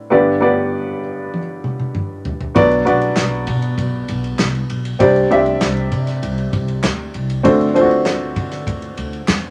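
Piano-driven pop at 98 BPM with a hopeful, anthemic mood, cut from a longer piece and moving through G, Bm, Csus2 and D7. A dark, mellow upright piano sits up front with audible action noise and short sustain, joined at 1.3 seconds by an airy acoustic drum kit played with bundle sticks, whose fill leads into a woody pizzicato upright bass at 2.6 seconds. Hollow group handclaps enter in the background at 3.2 seconds, all within a moderate studio ambience.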